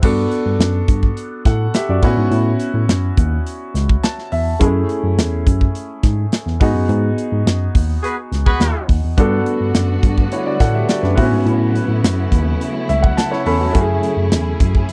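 A dry, close studio sound opens this bittersweet, nocturnal slice of polished 1980s jazz-funk pop, with the groove already underway at a straight 105 BPM in 4/4. A modern acoustic drum kit sits up front with an airy, small-room feel, a tight kick, a medium-tuned snare, hi-hat and crash cymbal, while a mellow tine electric piano carries the bass line with a worn, slightly out-of-tune, clean character. An intimate grand piano supplies the accompaniment, its natural tone carrying audible action noise, long sustain and a subtle chorus, and it steps out with short fills around 3.7 s and again later. During a band accent, a dark horn section in octave doubling adds a brief second line at 8.0 s, sounding distant and roomy with light vibrato. From 9.2 s a dark, lush string section enters with bowed, expressive sustained chords and a smooth top, colouring the harmony as it moves through Gmaj9, A69 and F#m9 to close this cut from a longer piece.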